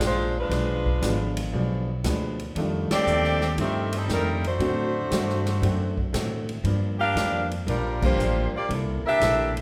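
Big band swing at 117 BPM with a brassy, energetic mood, where an up-front saxophone section carries the melody with vibrato over a woody, growly pizzicato upright bass, a dark, clean hollow-body archtop guitar, a punchy big-room drum kit with ride, hi-hat and crash, and a baby grand piano in the background from 1.0 s, as the full band hits accents at 2.8 and 7.9 seconds in a moderate hall reverb.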